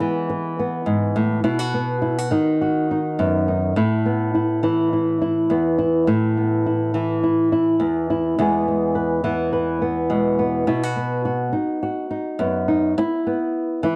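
A thumb-plucked flamenco guitar, acoustic and warm, plays alone and up front throughout this carefree, danceable highlife passage, cut from a longer piece, with a gently swung sixteenth-note feel in 4/4. The guitar cycles through E, B and Asus2 twice, reaching from low bass notes up into its middle register. A light reverb and small-room ambience give the guitar an intimate, close setting.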